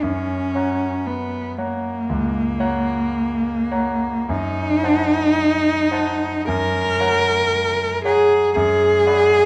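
Serene and warm, this romantic classical duo drifts at 50-60 BPM in a rubato 4/4, with a close, expressive bowed cello singing the melody up front with vibrato, soft attacks and portamento, while a bright, brilliant concert grand piano with deep bass and an open tone accompanies it through F#, F#dim7, F# and finally Bm/F#, the pair heard in a moderate recital-hall reverb with a dark production across this 9.5-second section cut from a longer piece.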